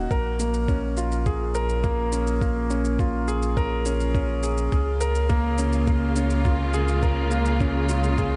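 A tender, hopeful piano-and-strings electronica fragment at 104 BPM opens with an up-front concert grand riff trailed by analog delay over a round sine sub bass with tube saturation and sidechain pumping, joined at once by a muffled, thumpy electronic kick and a faint layered shaker, moving from Bbm7 to Db6 as a rich, bowed chamber string section with vibrato enters on sustained chords at 4.7 s, all within a dreamy mix soaked in huge ambient reverb and darkened in its highest frequencies.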